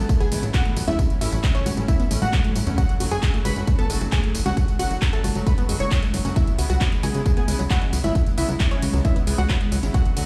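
Uplifting trance at 134 BPM with a bittersweet, driving mood, this excerpt sets a lush, detuned unison pluck melody carrying cassette tape and delay over a second pluck playing arpeggios with delay in the background, reedy bowed studio strings holding sustained chords, a funky square-and-sawtooth analog bass, a punchy up-front electronic kick, and a house kit of congas, handclaps, metallic hi-hat and tambourine, with sidechain pumping on the plucks, strings, bass, hats and percussion, all moving through Aadd9, F#m and C#m7 in a large studio reverb as if played on a big sound system in a bare room.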